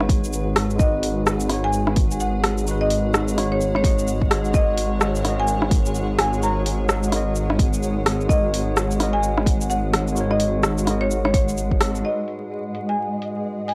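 A tine electric piano, a granular cloud pad, a swelling detuned saw bass and a deep house kit of hi-hat, rim click and shaker open this nocturnal, wistful slice of future garage, cut from a longer piece, with an electronic kick joining at 0.1 seconds. The swung groove leans on that deep, up-front kick and the kit's dark hats, while the bass is menacing and saturated and the pad stays cloudy and blurred, both breathing with sidechain pumping alongside the clean electric piano with its tape echo. From 0.8 seconds a bright, woody marimba played with hard mallets carries the melody, roughened by vintage 12-bit sampler grit and trailed by analog delay. The harmony moves from G#m7 to F#/G# and back, and after a band accent at 11.8 seconds the kick and bass drop away, a filter sweep passes over the drums, and a faint flickering, grainy texture surfaces from 12.5 seconds. The recording is dry, gritty hardware sound with vinyl crackle beneath it.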